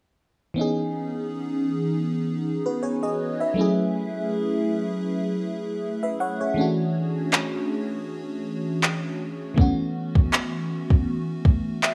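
A light, small-room reverb frames this moody, longing contemporary R&B excerpt, cut from a longer piece and carried by a gentle swung sixteenth-note feel. An FM electric piano layered with a soft pad opens the track alone from 0.5 seconds, its lush, dreamy tone detuned and coloured by chorus and phaser, with a fast attack, a decaying tail and a noise layer beneath. The chords move through C#m9, F#m9, Dmaj9 and B7sus4, giving the harmony a yearning, unresolved quality. At 7.3 seconds a produced, electronic R&B drum kit arrives up front, pairing a soft, overdriven kick with handclaps. The electric piano closes with a brief fill at 11.5 seconds before the excerpt ends.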